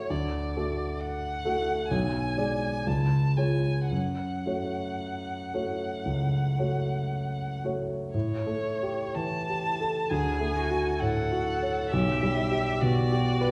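Rubato 4/4 at 54-68 BPM carries this elegiac, melancholic slow romantic movement for piano trio in F# minor, cut from a longer piece, as a rich, distant bowed violin sings the melody with vibrato, soft attacks and expressive portamento over an intimate, up-front grand piano accompaniment with audible action noise, and a clear, smooth cello enters at 10.1 s with an even second line, the trio heard from further back in a wet recital hall.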